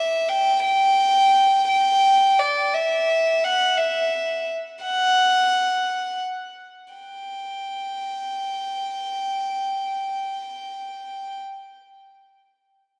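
A single bowed violin carries the melody across the whole clip, from 0.0 to 11.4 seconds, with a rich, pure tone and a soft attack that gives each note a floating quality. Played sul tasto, the line sits between D5 and G5 and feels both up front and distant, with tape echo trailing behind it. This short rock piece, cut from a longer work, moves in a straight 6/8 at 57 BPM counted in dotted quarters, and its mood is hopeful and euphoric. A lush hall reverb with a 2.6-second decay surrounds the violin. The music shifts into a new section at 6.9 seconds.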